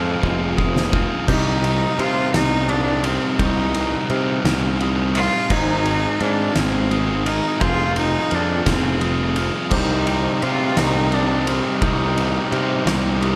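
A heavy, saturated studio sound with light reverb opens this brooding, melancholic post-rock passage, cut from a longer piece and moving slowly at 57 BPM in 6/8, in C minor. Up front, a growly, punchy fuzz bass and a sludgy overdriven guitar riff carry the weight, while an oversized low-tuned drum kit, recorded in a bright stone room with a boomy kick, fat snare and dark cymbals, enters with a fill at 0.2 seconds. A twangy, scooped electric guitar with phaser and slapback echo plays brief arpeggios before giving way at 1.3 seconds to a clear, earthy cello melody, bowed close with light vibrato and an airy tone. In the background, a bell-like glockenspiel with hard plastic mallets rings out arpeggios, and a very quiet pedal steel holds sustained chords with volume swells and slide. A bright, cranked stack guitar joins the riffing at 9.7 seconds as the harmony, having moved from Fm through Cm, Abadd9 and Fm, lands back on Cm.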